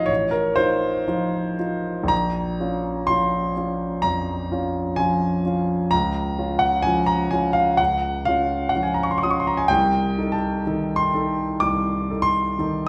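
A warm grand piano carries this short excerpt alone, its intimate, natural tone sitting up front with long sustain and the clatter of its action audible beneath the notes. The music is a romantic nocturne in the classical tradition, set in Bb minor at a slow 63 BPM in 4/4, with a rubato feel that lets the phrasing breathe. The mood is mournful and wistful, as the harmony moves from F7/A at the opening to Bbm at 2.1 seconds, then blooms into Dbmaj13 at 5.9 seconds before settling on Adim/C. The piano spans a broad register, from A1 in the bass up to Eb6, and it is tuned slightly high at A4 = 444 Hz. A wet recital hall reverb of about 1.5 seconds surrounds the instrument, giving the close, detailed sound a sense of space as the passage, cut from a longer piece, breaks off at 12.9 seconds.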